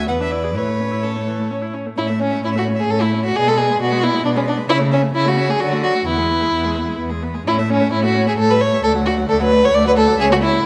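Heard in a moderate recital hall, this graceful, spirited fragment of a classical-period string quartet movement flows in a rubato triple metre. A rich, focused first violin carries the melody from the background, while a second violin with a smooth top sits up front on its own line; an expressive viola adds accompaniment with portamento, and a close, up-front cello with a soft attack anchors the bass, all four bowed with vibrato. The harmony moves from E7 through A, D and A7 before arriving on A/C# at 10.2 seconds.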